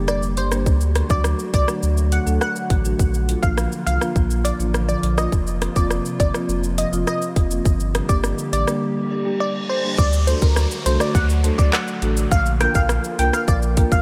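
A short break opens this sultry, bouncy dancehall excerpt at 103 BPM, where a woody marimba, a hollow, flute-like pad and a deep, round sub bass sound together from the start before the chords settle into a Gm, D, Bb, Fsus4 cycle. The electronic island pop kit sits up front with a tight kick, metallic hi-hats, handclaps, rim clicks and shaker in a straight 4/4. A glassy, crystalline wavetable pluck carries the melody, its detuned unison tone dressed in chorus and a diffuse ambient delay. The soft pad stays in the background with ensemble chorus and sidechain pumping, while the sub bass holds a mellow, sustained foundation beneath. A reverse cymbal and downlifter enter at 9.2 seconds, leading into a new section at 10.0 seconds, and the whole mix is dreamy and soaked in a moderate cathedral reverb.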